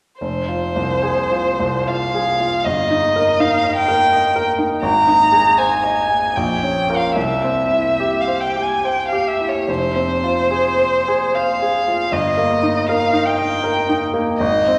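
This romantic classical duo for violin and grand piano unfolds in F minor in a rubato 3/4, its pulse drifting between 67 and 84 BPM with a solemn, melancholic mood. A single bowed violin carries the melody from 0.2 to 14.8 seconds, its rich, smooth tone shaded with vibrato and kept even, sitting up front yet with a distant quality. Beneath it, a baby grand piano supplies the accompaniment across a span reaching from deep F1 up to Ab5, its sound brilliant and polished, intimate enough that the action noise is audible. The harmony moves from F minor through Eb/G, Ab, Bb minor and C before returning to F minor and Eb/G. A concert hall reverb with a 2.5-second decay places the listener further back in the room. The passage is cut from a longer piece.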